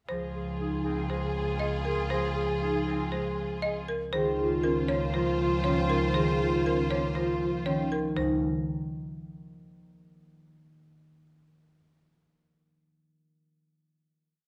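A straight, steady 4/4 pulse drives this short, hypnotic and propulsive piece of minimalist classical pattern music, built from repeated short cells on a dry, woody folk marimba with hard mallets, a metallic vibraphone with soft mallets and fast motor vibrato, and a bright, thumb-plucked concert harp. Around them, a mellow clarinet adds a background second line of pulsing notes that swell and fade, a distant, lush studio string section holds swelling chords, and a rich bowed double bass sustains long low notes with portamento, set in a moderate large studio reverb. The other parts fall away by 8.4 seconds, leaving the harp alone on a rootless final chord until 10.2 seconds.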